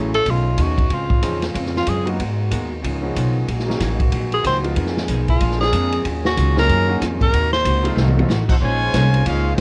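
A punchy tenor saxophone with scooped notes and light vibrato carries a sultry solo in this swinging big band piece at 187 BPM in Bb minor, its tone colored by cassette tape and plate reverb. Beneath it, a woody pizzicato upright bass sits up front, and a drum kit with a medium-tuned snare swings along and plays a fill at 8.0 seconds. An intimate baby grand piano with audible action noise adds accompaniment, while in the background are a clean hollow-body archtop guitar and a dark, soft-attacked trombone section holding sustained chords. At 8.5 seconds a clear, present trumpet section takes the melody while a warm trombone section plays a second line.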